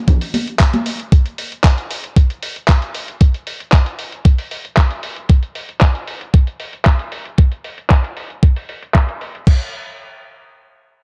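A dark, warm production sits in digital ambience, with an overdriven, thumpy electronic kick drum pushed up front at a straight 115 BPM in 4/4. This groovy, sensual nu-disco excerpt, cut from a longer piece, runs on drums from 0.1 to 9.6 seconds. A gritty, compressed sampler-style soul kit adds crash cymbal, handclaps and hi-hat at a lower level, its hats, snare and cymbals rolled off by a low-pass filter. High-tuned, saturated congas with a thin, damped skin and hard hands appear only briefly, from 0.1 to 0.8 seconds. A filter sweep on the drums runs through the opening section until 9.5 seconds, when a short closing section begins.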